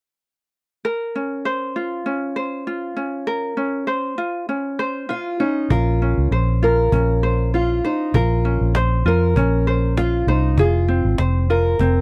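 Heard first at 0.8 seconds, a mellow, light fingerpicked ukulele sits up front on a Bbmadd9 chord in this reflective, wistful acoustic pop piece in Bb minor at 99 BPM with a gentle sixteenth-note swing, joined at 5.1 seconds by a fingerpicked old ladder-braced acoustic guitar carrying a boxy melody on aged strings, and at 5.7 seconds by a round, punchy, foam-muted vintage electric bass and a woody cajon struck with hard hands and faint snares, all captured in a dry, close 1970s-style studio sound, with the harmony turning to Fm near the end of this fragment of a longer piece.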